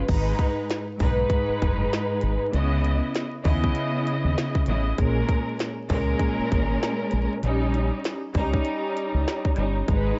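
Boom-bap hip-hop at 98 BPM in 4/4, this gritty, tough excerpt sits in G# harmonic minor with a 58% swing on the sixteenths. A lush studio string section carries the accompaniment, bowed with smooth vibrato and given a cassette-tape tint and filtering at both ends of its range, while the chords move from G#m through C#m9 and A#m7 to D#7/A#. Beneath it, a deep, dark fingered electric bass plays round and punchy through tube saturation, holding the low end from 0.1 to 10.1 seconds. An electronic drum kit with a tight kick, tiny snare, clicky hats and crash cymbal is overdriven and re-recorded in a small room, sitting up front alongside the strings. The whole excerpt has a dry, hardware-recorded grit, with vinyl crackle and a dulled top that stops at 7.7 kHz.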